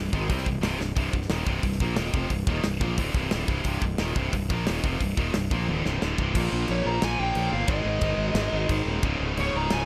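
A growly, punchy fuzz bass sits up front in this dark, epic heavy metal excerpt beneath a pair of bright, picked distorted rhythm guitars, one high-gain and one tight, that churn through a relentless riff over a tight-kicked acoustic kit that breaks into fills at 0.8 and 5.7 seconds. At 6.4 seconds the drums drop into half time and the chords begin to shift, and a smooth, dark overdriven lead guitar enters at 6.7 seconds with a picked melody up high. A small room ambience frames the drums and lends the whole passage a close, compact feel.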